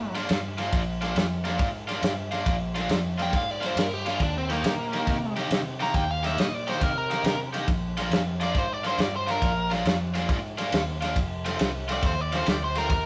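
A rough rehearsal-room sound with warm saturation and a moderate stone-room reverb frames this rollicking, laid-back electric blues shuffle in Bb major, swinging at 138 BPM over Bb, Eb and F. An up-front, gritty soul drum kit with a tight kick, medium-tuned snare, dark ride cymbal and a pumping, rolled-off room sound sits alongside a round, punchy, foam-muted fingered electric bass, while an overdriven semi-hollow guitar picks a hollow-bodied riff. A biting, bright lead guitar sounds briefly at the very start and then carries the solo in earnest from 3.2 s in this passage cut from a longer piece.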